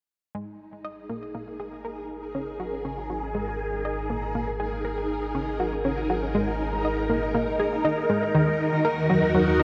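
Hypnotic and cosmic, this cut from a longer piece of ambient, sequencer-driven space music moves at 120 BPM in a straight 4/4, where a swirling, phased string machine holds bright, sustained chords drenched in ensemble chorus, a round analog pluck spins a bright riff through chorus and delay, and a deep, mellow analog bass sits beneath, all three fading in together from 0.3 s over G#sus2 shifting to D#m at 8.3 s, wrapped in a huge, wet reverb and the warbling pitch drift of worn cassette tape.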